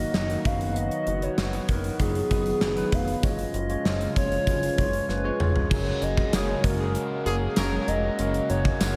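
A hollow, woody synth lead with vibrato carries the melody over bell-like electric piano, a shimmering pulse-width pad and a glossy chorused synth bass in this glossy, romantic 1980s-style pop excerpt, while a punchy gated drum kit with bright cymbals and tambourine sits up front. After a drum fill at 5.1 seconds, a bright, double-tracked overdriven guitar enters at 5.7 seconds in the background, and a horn section adds stabs with light vibrato from 6.3 seconds. Moderate plate reverb soaks the whole mix in a dreamy haze, and diffuse ambient delay trails the lead and horns.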